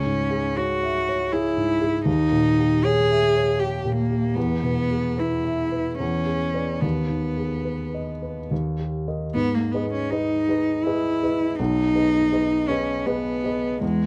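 A solo cello and a baby grand piano begin together in this short cut from a longer romantic classical duo, setting a solemn, melancholic tone in G# minor. The cello carries the melody between G#3 and G#4, played by a single bowed player with a soft attack, light vibrato and an airy, sul tasto tone that sits close and intimate at the front of the sound. The piano accompanies from B1 up to E5 with a dark, mellow voice, its natural sound including audible action noise that adds to the sense of closeness. The pulse moves in 3/4 at roughly 70-83 BPM, with a flexible rubato feel. The harmony opens on C#m, passes through a tense D#7b9 and E to D#, then arrives on G#m at 9.3 seconds for a new section. Light reverb and a dusky, warm production frame the two instruments through to the close at 14.1 seconds.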